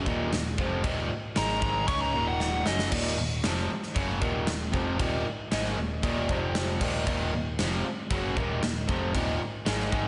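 Menacing, driving hard rock at 116 BPM in Eb minor, cut from a longer piece, where a bright, double-tracked overdriven semi-hollow guitar riff with slapback echo sits up front over growly picked electric bass and a big, punchy rock drum kit with bright cymbals, while a dark, smooth overdriven lead guitar solo appears only from 1.4 to 2.9 seconds before a drum fill leads into a new section at 2.9 seconds, all inside a lush hall reverb that gives it a big arena sound.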